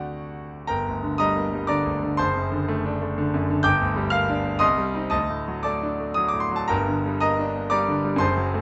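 This romantic classical character piece for solo piano feels passionate and bittersweet, moving in a rubato 3/4 at roughly 111-127 BPM in G minor, tuned to A4 = 439 Hz. A brilliant concert grand carries everything alone, sitting up front with a present, polished tone and deep bass that reaches from F#1 up to G6. After an opening D chord, the phrase settles on G minor at 0.7 seconds and moves through D7/F#, back to G minor, then C minor and D before returning home to G minor at 6.7 seconds. The supple, elastic pulse gives the phrasing a free, flexible shape. Light reverb surrounds the instrument, and the overall production is dark and warm, with nothing above 7.9 kHz. The passage is cut from a longer piece and ends at 8.6 seconds.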